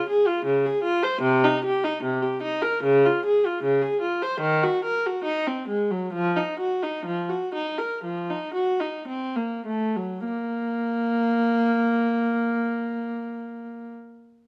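In a rubato 4/4 that drifts between 49 and 79 BPM and slows from 1.2 to 10.2 seconds, this flowing, introspective baroque-style classical suite movement, cut from a longer piece, features one bowed viola with a reedy, gut-string period tone, placed up front in a moderate stone room and playing alone until 13.9 seconds.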